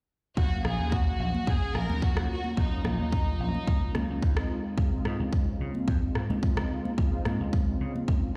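Sensual and groovy, this nu-disco excerpt moves at 109 BPM in Eb dorian, shifting from Ebm9 to Dbmaj9 at 4.5 seconds over a punchy, overdriven electronic kick up front, a layered overdriven rim click and close, dry congas with hard hands in the background. A punchy, amped vintage slap bass with tube saturation anchors the groove while mellow, detuned sawtooth synth brass, round and dark, pumps with sidechain under chorus, cassette tape and tape echo, and a filter sweep on an analog polysynth runs throughout. A soft-attack, floating violin section carries the melody with dub echo until 4.5 seconds, all in a dry mix heard as if played on a big sound system in a bare stone room.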